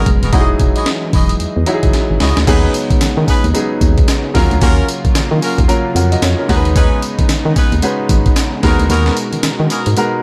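Confident and slick, this short new jack swing excerpt struts along in 4/4 with a swung sixteenth-note feel. Up front, a gritty, compressed, sampler-style breakbeat kit punches through with a thumpy kick, a high-tuned snare, hi-hat, tambourine and crash, its pitched-up sound carrying the air of a large room. Beneath it, a punchy, round FM bass with a dark, decaying tone anchors the low end, while an intimate grand piano, its action noise audible, plays accompaniment with a short sustain. A clear jazz-style horn section adds stabs with light vibrato, and a bold, brassy sawtooth pad with chorus and a filter sweep sits in the background, sustaining lush harmonies that move from Emaj9 through B69/D# and Gbmaj7 to Abm9. A drum fill at 1.9 seconds leads into the second section, the kick drops out at 8.9 seconds, and the whole mix stays dry and close.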